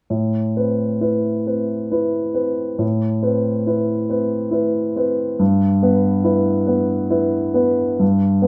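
A dark, mellow grand piano plays alone from 0.1 seconds in this intimate, wistful fragment of neoclassical minimalist music in A minor, moving with a loose rubato feel around 68 BPM in 3/4 time. The piano stays up front across a range from G2 to B4, resting on an Amadd9 chord before shifting to Em/G at 5.4 seconds. A moderate studio reverb gives the room a gentle sense of space, and the piece is cut off at 8.5 seconds.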